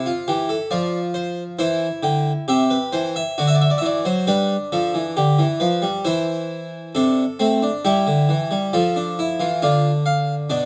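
Close, detailed miking and light reverb place a full, plucked French-style harpsichord with two sets of strings up front in this lively, stately excerpt of a baroque-style three-part fugue at 67 BPM in 3/4, where the solo harpsichord spans B2 to G5 and moves through C, F5, D7 and G7 before a second section begins at 7.0 seconds and ends on a Bdim/D chord at 10.7 seconds.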